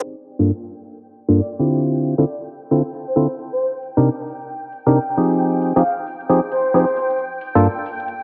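A moderate, lush hall reverb and a low-pass filter soften this late-night, moody two-step UK garage excerpt, which moves at 134 BPM with a swung 16th feel in G phrygian over Gm9, Dm9, Cm9 and Fm9 chords. Hollow, percussive organ stabs with chorus and dub echo sit up front from 0.4 s, while a breathy, flute-like synth lead with vibrato, cassette tape colour and dub echo carries the melody until 7.2 s. A silky vintage string machine holds sustained chords with ensemble chorus, and a dry, overdriven electronic hi-hat ticks through a low-pass filter in the background.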